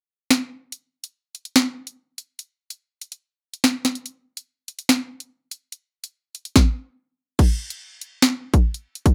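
A rough home-demo sound with light reverb frames this short cut from a longer hip hop piece, tense and ominous, at 144 BPM in 4/4 with a half-time feel. During a brief opening break, an electronic drill drum kit enters at 0.3 seconds and sits up front: a hard-clipped kick, sharp snare, bright hi-hats, finger snaps and crash cymbal. The kit plays through to the end at 9.1 seconds, with the music moving into a new section at 7.4 seconds.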